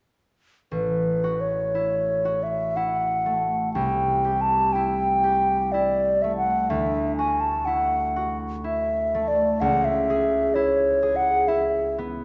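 In a freely breathing rubato triple metre, this dreamy, luminous impressionist duo, cut from a longer classical piece, sets a pure, hollow concert flute melody in straight, tongued tone with lifted highs over fingerpicked, ringing concert harp accompaniment, both placed up front. The harmony moves from A6 to C6, then Dadd9 and C#m, all wrapped in a wet recital hall reverb and a dark, warm production.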